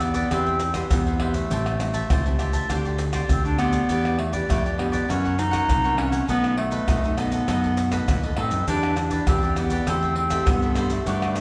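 A warm, vintage-toned clarinet carries the melody up front in a classical style, its solo voice leading this lively, joyful blend of samba and choro. Beneath it, a bright, crisp cavaquinho is picked, while a fingerpicked nylon-string guitar adds a classical touch, with finger squeak audible on its strings. A fingered electric bass, direct and amped with overdriven fuzz, gives the low end a gritty edge. Maracas, pandeiro, tamborim and a deep surdo sit close and present, with a small-room feel to the percussion. Every part plays through the full 11.4-second excerpt, cut from a longer piece, as a wet recital-hall reverb adds a resonant glow and the chords move from Cmaj7/E through F#7 and B7 back to Em7.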